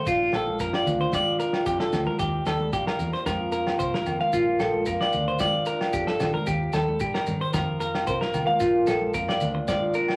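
A straight 4/4 groove at 112 BPM carries this carefree highlife guitar band snippet in Bb major, with a dark, smooth soul drum kit's punchy kick and snare, grainy maracas, ringing agogo bells and congas set in the background, and a foam-muted fingered electric bass underneath. Up front, a bright, twangy clean electric guitar spins compressed arpeggios with a warbly pitch drift, while a boxy old ladder-braced acoustic guitar picks the accompaniment through Bbmaj7, Ebadd9 and Fsus4. A wet club reverb and vinyl crackle frame the roughly 10-second passage.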